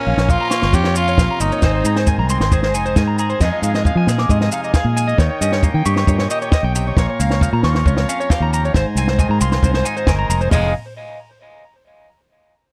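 A raspy, gritty tenor saxophone opens this bittersweet highlife guitar band passage, carrying the melody up front with pop-style vibrato for only its first 2.1 seconds. Beneath it, a bright, compressed clean electric guitar with subtle chorus plays accompaniment, a reedy combo organ holds sustained chords in the background, and a twangy guitar at the edge of break-up spins fingered arpeggios through tape echo. A round, foam-muted fingered electric bass enters at 0.1 seconds, and a compact cocktail drum kit with dark cymbals, a high-tuned snare and a punchy kick joins at 0.2 seconds alongside grainy, mellow maracas. The straight 4/4 groove cycles through Bbm, Abadd9, Fm7 and Eb7, with bass and drums sitting prominently and the organ and maracas kept light. The dry, close sound of a 1970s-style studio keeps each part distinct, and the passage is cut from a longer piece.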